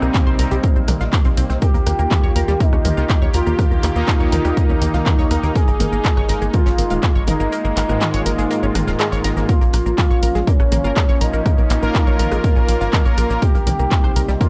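Driving straight 4/4 at 122 BPM, this dark, dramatic melodic techno excerpt in Bb dorian rides a heavy, up-front electronic kick that drops out from 7.5 to 9.5 seconds, alongside a roomy techno kit of handclaps, hi-hat, rim click, shaker and toms, a very quiet damped 70s kit with a fat snare, and a punchy, detuned sequencer bass, with the techno kit and the bass pumping under sidechain. A smooth, mellow synth lead with vibrato and tape echo carries the melody over a tight sequenced arpeggio, an evolving bright pad and a faint overtone-sweeping drone with phaser, while bold, warbling analog synth brass stabs enter at 3.0 seconds. The chords move from Cm through Eb, Absus2 and Bbm back to Cm, captured in a dry, gritty hardware sound with cassette and 12-bit sampler grit on some parts.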